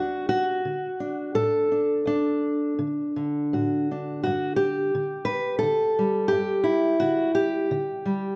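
A moderate recital-hall reverb surrounds this short cut from a longer folk piece, in which a single fingerpicked steel-string acoustic guitar sits up front with a dark, concert-grade tone, audible finger squeak and a slapback echo. The gentle, pastoral playing moves in a rubato triple metre, ranging from D2 to B4, resting on a D chord before shifting to a G5 at 4.2 seconds for the second phrase, which closes at 8.4 seconds.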